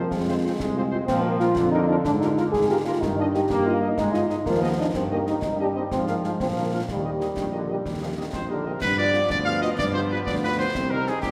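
A bright trumpet section carries the melody with light vibrato in this proud, rousing military-style march for wind band in 6/8 at 124 BPM in Eb major, cut from a longer piece. Beneath it a warm solo euphonium sings a second line until 8.3 s, a tight trombone section holds sustained chords, a mellow, close-miked tuba anchors the bass, and a very quiet French horn section adds soft-attacked accompaniment, while concert snare, bass drum and dark clash cymbals sit close behind. The ensemble rings in a wet concert hall reverb, and at 8.8 s a new section turns the harmony toward G7 and Cm.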